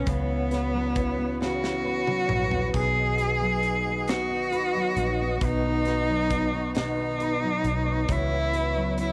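A clear, focused cello played by one player leads this short cut from a romantic, heartfelt six-eight pop ballad in B major, its bowed melody with vibrato sitting up front as a fingerpicked classical nylon-string guitar, double-tracked with a cassette-tape character, plays accompaniment beneath it. The tempo is a slow 45 BPM counted in dotted quarters, with a straight feel. A soft, flute-like tonewheel organ holds sustained chords in the background, colored by chorus vibrato, key click and a slow rotary speaker, while a very quiet, dark, compressed electric guitar plays clean fingered arpeggios. A round, foam-muted vintage electric bass anchors the low end, and a polished, airy acoustic drum kit with a high-tuned snare and punchy kick enters at 0.1 seconds, playing a fill from 1.4 to 2.7 seconds. The harmony moves from F#7sus4 to B and back to F#7sus4 over C#, all set in studio reverb with the intimate, tape-tinged feel of a home cassette recording.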